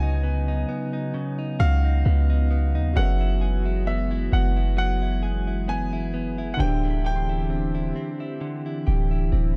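A deep, boomy 808-style bass sits up front in this short excerpt of contemporary R&B, its fast attack decaying into a mellow sine tone with a noise layer beneath. The mood is sensual and longing, moving at a slow 66 BPM in 4/4 with a light swing on the sixteenths, through suspended ninth chords on C#, F# and then D at 6.6 seconds. A clear baby grand piano carries the melody high in its range, its delay and audible action noise giving it an intimate, natural presence until it stops at 7.9 seconds. Beneath it, a felt-muted upright piano plays soft, vintage-toned accompaniment in the background, while a clean, direct-recorded electric guitar picks compressed arpeggios bathed in spring reverb. A glassy FM pad holds ethereal sustained chords with slow attack, ensemble chorus and its own reverb, and a very quiet concert harp adds a brief ringing, fingerpicked texture between 6.6 and 8.6 seconds. 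The whole sits in a small room ambience with a dark, warm production.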